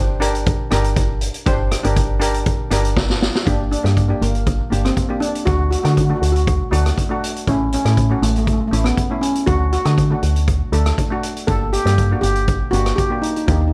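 A straight 4/4 calypso groove at 120 BPM in G minor, tense and dramatic and cut from a longer piece, is carried by a street-band drum kit with a boomy kick, medium-tuned snare, hi-hat and rim click, beneath a round, woody FM bass and a close-miked, dry double-seconds steel pan keeping accompaniment throughout. After a drum fill from 3.0 to 3.5 s, a bright, shimmering steel pan melody played with hard rubber sticks enters at 3.5 s with tape echo, as the harmony turns to G harmonic minor and moves through Gm, D, A, D and back to Gm. The dark production sits in a small room reverb, with the bass most prominent.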